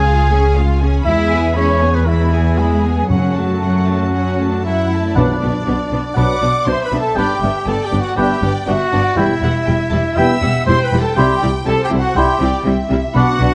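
A straight 4/4 pulse at 120 BPM drives this swashbuckling, adventurous cinematic excerpt in F# minor, shifting to B phrygian at 5.2 s. Throughout, a dark, lush violin section carries the melody over a second violin line, a rich viola accompaniment in the background, an intense cello section and an up-front double bass section, while a distant, roomy trumpet punctuates with stabs. Timpani struck with medium mallets on calf heads sound from 3.1 to 5.9 s. A hollow silver flute enters at 5.1 s, and from 5.2 s a mellow oboe, a very quiet clear clarinet and a background French horn section holding sustained chords join in, all set in a moderate scoring stage reverb.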